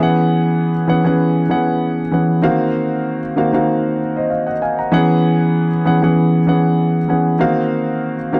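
Bittersweet and silky, this short soul excerpt features a single concert grand piano playing alone for its full 8.4 seconds. The harmony moves between E69 and Ebm69 chords, shifting at 2.4 seconds and again at 4.9 and 7.4, giving the passage a gently unresolved, wistful colour. A light sixteenth-note swing gives the phrasing a relaxed soul lilt. The piano sits up front and intimate, its tone natural with deep bass and audible action noise that brings the listener close to the instrument. Light reverb and a dark, warm production wrap the sound, and the fragment feels lifted from a longer piece.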